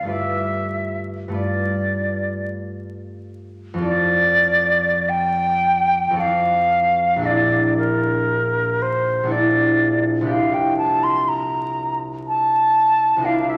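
Classical impressionist duo in a pastoral, dreamy mood, this excerpt from a longer piece sets an airy, vibrato-laden tongued flute melody up front over bright, ringing fingerpicked harp accompaniment in a rubato 3/4, moving through lush chords such as Bbmaj7#11 within the wet bloom of a recital hall, with vinyl crackle beneath.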